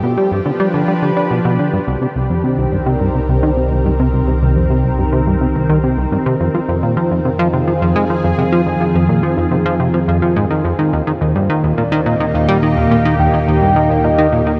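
A thick, detuned unison pad holds chorused, phased chords over a punchy, funky analog bass riff with delay in this expansive, mysterious stretch of sequencer-driven space music, as a warbling analog drone with slow attack creeps in beneath at 2.7 s and a round, dark octave-layered synth lead with vibrato and vintage 12-bit sampler grit takes up the melody at 11.8 s, inside a huge ambient reverb.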